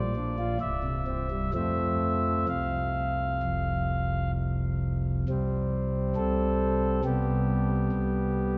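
A chamber organ on a principal stop opens alone, its smooth tone carrying a chiff at the start of each note and sitting up front in the sound. This brief classical fragment, cut from a longer piece, unfolds as a serene, reverent chorale in four with a flexible, rubato feel. The organ spans from deep bass at C1 up to F5, moving through Gm7/Bb and C before settling on F at 1.5 seconds. At 5.3 seconds a second passage begins on an open C5 sonority, shifting to G/C near the close. A cathedral reverb with a long 4.8-second decay surrounds the chamber voicing, letting each chord hang and blend in the resonant space.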